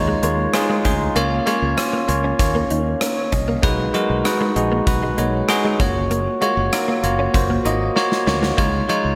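Drenched in a lush hall reverb that gives a big arena sound, this nostalgic, uplifting 1980s-style pop fragment moves in a straight 4/4. A bell-like tine electric piano with slapback echo carries the accompaniment up front over a dark, round fretless bass, while a gated drum kit with a punchy kick and medium-tuned snare drives the groove; in the background sits a compressed, picked clean guitar riff, recorded direct and treated with ensemble chorus, digital delay and slapback echo. The chords move from Dbadd9 through Bbm/Db, Cb6 and Gbmaj7, and a drum fill at 8.0 s leads back to Dbadd9.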